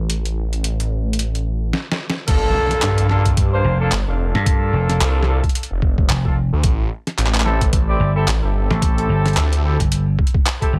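Gritty and funky, this glitch hop excerpt moves at 110 BPM in 4/4 with a 16th-note swing. It opens on a swirling, thick phased saw bass, detuned and saturated, riding over a compressed, pitched-down boom bap drum kit of hi-hat, handclaps, a medium-tuned snare and crash cymbal. A drum fill at 1.7 seconds leads into the drop at 2.3 seconds, where a thumpy, tape-flavored electronic kick arrives up front, a background impact hits, and a mellow vintage horn section adds jazz-style stabs with light vibrato, pumping sidechain and digital delay. From 3.6 seconds a punchy, amped slap bass joins up front as the harmony moves from Gm7 to Am7. The mix is dry, with little reverb.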